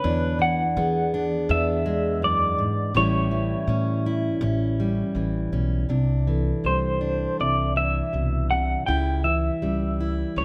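A straight 4/4 pulse at 81 BPM carries this tender, heartfelt acoustic folk-pop ballad, a short passage cut from a longer piece. Up front, an electric guitar through a small old amp sings the melody with a dark, slightly broken-up, lo-fi and compressed tone shimmering with tremolo, while a plugged-in steel-string acoustic guitar fingerpicks a warm accompaniment beneath it. An upright bass with gut strings plays pizzicato, its woody, thumpy notes sitting close alongside the guitars. Further back, a vibraphone struck with soft mallets, its motor off, spins mellow, metallic, ringing arpeggios until it drops out at 8.8 seconds. The harmony moves from E7 to A7, then shifts at 5.9 seconds into a second section on Cadd9 before closing on a rootless A7/C#, all framed by light reverb.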